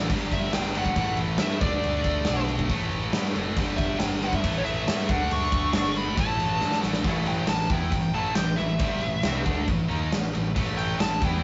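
Powerful and swaggering, this short hard rock excerpt drives along at 138 BPM in a straight 4/4, its power chords cycling through G5, A5 and D5. Two scooped, high-gain guitars play the riff with bright, picked distortion, one sitting further back in the mix, while a growling fingered electric bass adds overdriven punch beneath them. A huge arena drum kit sits up front with bright cymbals, a medium-tuned snare and a punchy kick, and it plays a fill from 6.6 to 7.1 seconds. A bluesy overdriven lead guitar carries the melody high above from 0.3 seconds, then breaks into a solo at 7.1 seconds for the rest of the clip. The sound is a rough rehearsal-room recording with moderate studio reverb and a dull, muffled top end.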